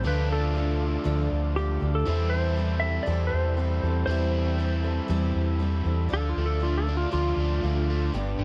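A dark, ambience-washed production frames this reflective, wistful folk and heartland rock fragment, where a twangy clean lap steel carries the melody through tape echo over a shimmering, octave-doubled twelve-string acoustic, a bright, double-tracked overdriven electric guitar riff, a clear tonewheel organ turning through a slow rotary speaker in the background, and a round, punchy hollow-body bass up front, with an electric slide guitar solo arriving at 6.1 seconds.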